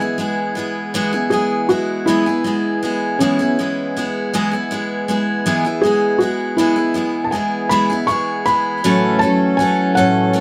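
Close, detailed miking with light reverb frames this nostalgic, peaceful acoustic folk fragment in a slow 6/8 at 53 BPM, where a bright, full-bodied picked steel-string guitar sits up front with audible finger squeak, a reedy, breathing pedal harmonium holds sustained chords in the background, and a soft, felt-muted upright piano with audible action noise enters at 1.3 seconds to carry an intimate, mellow melody, the harmony resting on E before moving to A6 at 8.8 seconds.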